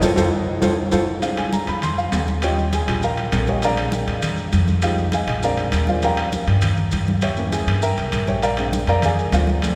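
Lively and danceable, this Afro-Cuban jazz passage opens with a band accent in its first 1.2 seconds. Throughout, an intimate, up-front grand piano with audible action noise and deep bass solos over woody, thumpy pizzicato upright bass on gut strings, thick-skinned congas heard close and dry, grainy maracas, and ringing metal-shell timbales set distant in a large room. The whole recording carries the long reverb of a church or concert hall.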